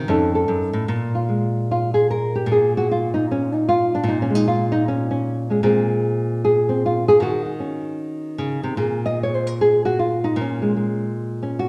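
A lone nylon-string guitar opens on an F7b13 chord before settling into Bbm9 for a cool, late-night solo jazz passage with a gentle swing. The dark, classical tone is thumb-plucked and up front, with audible finger squeak, as the harmony moves to Ebm7 at 7.2 seconds and back to Bbm7 at 8.8 seconds. A wet, lingering reverb places the guitar in a church or concert hall, and the passage is cut from a longer piece.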